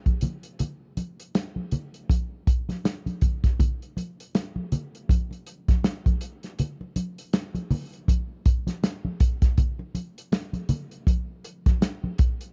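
Cinematic and bittersweet, this swung soul groove, cut from a longer piece, sets a muffled, lo-fi acoustic drum kit of hi-hat, tight kick and medium-tuned snare up front beside close, damped congas with a thick skin and soft hands, both entering at 0.1 s in a dry, dark production that moves into a new section at 3.6 s.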